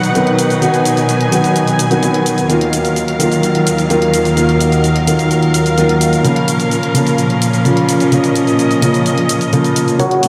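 Driven by a straight 4/4 pulse of electronic hi-hat and shaker, layered and tape-warm with a small-room tint, this anthemic, euphoric slice of festival progressive house opens with a concert grand piano up front, its deep-bassed accompaniment given lush chorus and tape echo. Beside it, a clear, focused studio string section holds sustained bowed chords with vibrato, softened by a low-pass filter, as the harmony moves from B to Ebmadd9 at 2.5 seconds and Bbm at 6.2 seconds. At 10.0 seconds a punchy supersaw stab riff arrives, a detuned unison sawtooth with a sub octave and a filter pluck. A very quiet, thick detuned saw bass enters at the same moment, beating and menacing. A brilliant piano arpeggio sits in the background there too, treated with analog chorus and a low-pass filter. A church reverb soaks the whole mix, giving it a dreamy glow before the cut at 10.3 seconds.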